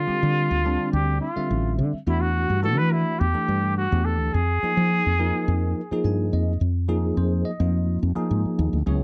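A straight 4/4 groove carries this slick, intense jazz excerpt from a longer piece. A woody fretless electric bass anchors it from the start, its round, hollow-body tone sitting up front through the full 9.0 seconds. A bell-like tine electric piano enters just after, bright and clean, coloured by a phaser as it comps through a Dm9, Em9 and Fm7 progression and slips in a short fill from 5.8 seconds. Also from the start, a breathy trumpet carries the melody with a whispered, intimate quality, soft attacks, scooped notes and vibrato, treated with a slapback echo before it stops at 6.0 seconds. The piano and bass then continue into a new section, all captured in a dry, close 1970s-style studio sound with light reverb.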